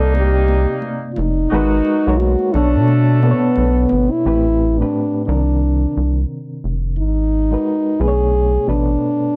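A dark, classical-style French horn carries the melody from the start over a gritty, overdriven reed electric piano with fast tremolo, a rubbery square-wave bass up front, vintage horn-section stabs and ringing, high-tuned congas in the background. This soulful, late-night R&B and neo-soul cut moves at 88 BPM with a swung sixteenth feel through minor ninth chords such as Cm9 and Am9, in a dry, close 1970s-style studio sound with light reverb. The horn stabs drop out at 3.9 seconds and the congas at 4.1 seconds, so French horn, electric piano and bass carry the second half of the excerpt, with the bass falling away at 9.0 seconds just before the end.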